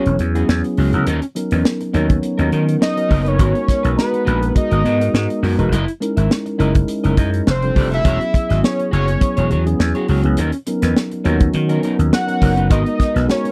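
A fat, detuned analog lead carries the melody up front, its sawtooth-and-square tone shaded with vibrato and a slapback echo. This is a breezy, urban slice of polished 1980s jazz-funk pop in B major, moving at 103 BPM in 4/4 with a light swing on the sixteenths. Beneath it, a mellow tine electric piano plays clean chords through an analog chorus, moving through extended harmonies such as Bmaj9/D#, G#m9 and F#13. An electric guitar at the edge of break-up adds a dark, fingered riff through a lush chorus, set further back in the mix. A growly, bright vintage slap bass enters at 0.1 s alongside a tight funk drum kit with a high-tuned snare, tight kick and hi-hat, and both sit up front. The dry, close studio sound carries only light reverb, and this 13.5-second excerpt is cut from a longer piece.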